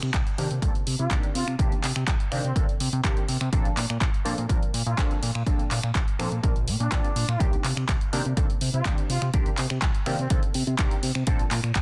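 A straight 4/4 groove at 124 BPM drives this nostalgic, funky filtered disco house excerpt in C dorian. A punchy, tape-warm electronic kick sits up front, joined by an analog drum machine of finger snaps, handclaps and pumping hi-hats, with soft clipping on the snare. A fat, detuned sawtooth-and-square bass pumps under sidechain compression, its low-pass filter sweeping through a moving notch. From 0.4 s a funky polysynth comp adds chorused, phased, wave-folded sustained chords over a Cm9 to Bbmaj9 progression. At 1.0 s a distant, roomy horn section enters with light vibrato and delay, playing until 10.4 s, while a filter sweep runs across the whole clip in a dense, heavily limited modern mix.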